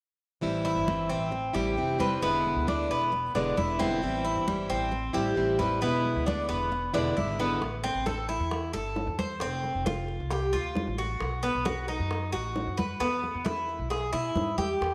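A straight 4/4 pulse at 134 BPM drives this sultry Cuban son and guajira excerpt in A minor, where an up-front picked steel-string acoustic guitar accompanies from 0.4 to 7.6 s before bongos with hard hands enter at 7.6 s beside the background congas, while the bright, metallic double strings of the Cuban tres play arpeggios up front over a woody pizzicato upright bass, all set in a lush echo-chamber reverb as the chords move from Am7 and E7 to Am, Fadd9, B7 and E.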